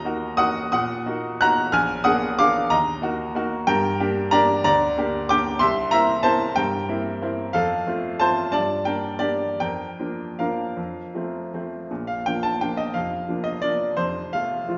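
A clear, natural baby grand piano sits up front with short sustain in this playful, elegant classical waltz fragment in 3/4, moving with rubato between 146 and 196 BPM from opening E-flat minor harmonies into B-flat major at 3.7 s, the solo piano ringing through a wet recital hall reverb in a church or concert hall whose sound rolls off above 7.5 kHz, with a new section arriving at 11.9 s before the cut at 14.8 s.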